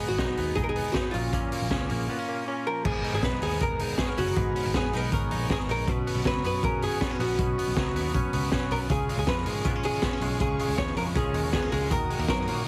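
A straight 4/4 pulse at 159 BPM drives this youthful, breezy jangly indie pop excerpt, where a gritty, boomy garage drum kit sits up front under a round, foam-muted picked bass, a twangy chorus-tinged clean electric guitar spins arpeggios, a dark hollow-body archtop carries the melody over a reedy combo organ in the background, and a lush, distant bowed string section enters at 8.9 s with vibrato and portamento, all heard through light reverb and a heavily compressed radio sound.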